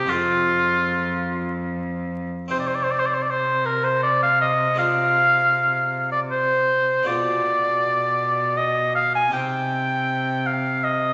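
In a straight 3/4 at 79 BPM, this introspective, flowing baroque-style sonata movement in C minor features a close-miked solo oboe with light vibrato carrying the melody up front, a rich, gut-string bowed cello holding the bass, and a brilliant, plucked harpsichord with octave strings accompanying in the background, all in a wet recital hall reverb with a vinyl crackle, as the harmony moves from Fm to Cm at 2.5 seconds and through Bdim7 back to Cm by 9.3 seconds.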